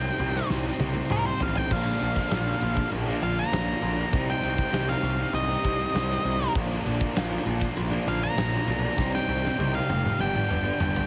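Over a straight 99 BPM beat in 4/4, this brooding, cathartic excerpt of quiet-loud alternative rock in C minor centers on a dark octave-fuzz lead guitar soloing with tape echo, backed by two bright, picked fuzz guitar riffs in the background (the second entering at 1.7 s), a growly overdriven picked bass, a very quiet, flute-like tonewheel organ holding chords through a slow rotary speaker, and a huge, up-front arena drum kit with punchy kick and bright cymbals that fills at 0.5 s and 9.0 s, all under light reverb and a heavily compressed radio sound as the chords move between Cm and Bb before landing on G.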